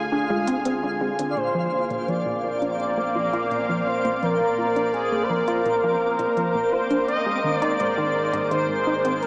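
A wet concert-hall reverb with a 2.1-second tail surrounds this short cut from a longer piece of ambient, sequencer-driven space music, heard through a small-speaker sound, hypnotic and cosmic in mood at 84 BPM in a straight 4/4. Up front, a smooth, expressive sawtooth lead with vibrato sings the melody between Ab4 and Eb5, softened by analog chorus, shimmer reverb and tape echo, while a bright, evolving pad with slow filter swells sustains chords beneath it. A tight, driving sequenced synth with a mellow, detuned filter pluck runs a riff from 0.1 s, and a twinkling granular texture adds sparkling octave-up shimmer high above. Deep in the background, a warm, wave-folded analog drone holds the bass, and a minimal electronic kit of clicky hi-hats and toms fades in from 1.4 s through tape echo. The harmony moves from Ddim to Bbadd9 at 1.4 s and settles on Abadd9 at 7.1 s.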